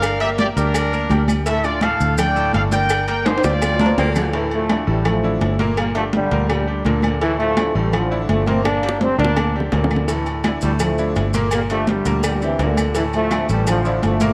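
Danceable and passionate, this salsa excerpt opens with a clear, punchy trumpet section carrying the melody over a bright, worn concert grand piano with audible action noise and a dark, foam-muted fingered electric bass up front. A busy percussion bed of high-tuned congas, low-tuned cowbell and bongos, ringing agogo bells and timbales, woody claves and grainy maracas drives the groove, while a distant baritone saxophone with tape echo slips in briefly at 3.8 seconds. At 4.0 seconds a mellow, roomy trombone section takes over the melody for the rest of the cut, with drum fills along the way and a moderate plate reverb adding space.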